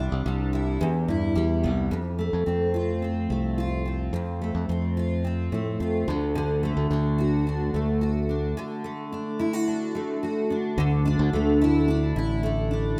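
Set in a lush hall reverb with a 2.4 s tail, this rough home-demo mix keeps both instruments up front. It's a short acoustic pop excerpt in a straight 4/4, tender and reflective in mood, and tuned slightly flat to A4 = 437 Hz. A picked, double-tracked steel-string jumbo acoustic guitar carries the accompaniment with a full-bodied, bright tone, ranging from E2 to F#4 and moving from Cadd9 and Em to F, then D, before settling on Dsus2. A fingered electric bass with a modern, direct sound plays underneath in the range of A1 to A2. The passage opens on a brief phrase, shifts into a longer middle stretch with a break at 8.6 s, and returns to the opening material at 10.8 s before being cut off.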